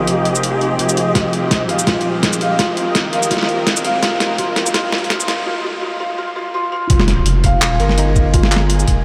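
Soaked in a huge ambient reverb, this dreamy, cinematic half-time drum and bass passage in F minor moves at 167 BPM with a light swing. A felt-muted upright piano plays mellow, intimate arpeggios with audible action noise under lush chorus and delay, over dark, woody sustained strings with sidechain pumping, a thick saturated sub bass, and a flickering, grainy texture in the background. A gritty, tape-toned boom bap kit of snare, handclaps, hi-hat and shaker sits up front, joined by a thumpy, pitched-down electronic kick at 1.2 s, with a drum fill during the build-up as filter sweeps run on strings and piano; after a break at 5.5 s, the drop lands at 6.9 s with a very quiet electronic impact, and the strings briefly return.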